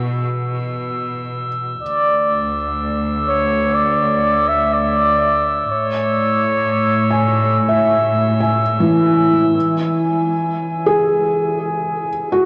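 A clear, vintage-toned flugelhorn carries a lightly vibrato solo melody from 1.8 to 8.6 seconds in this melancholic, spacious ambient excerpt. It floats over soft, felt-muted upright piano arpeggios with audible action noise and a rich, earthy bowed cello section bass that falls away at 9.5 seconds. A glassy, ethereal glass harmonica fades in alongside them, all bathed in a huge reverb and the warble of worn cassette tape, with diffuse delay trailing the piano and horn through Bsus4, Dsus2 and Amaj7 harmony.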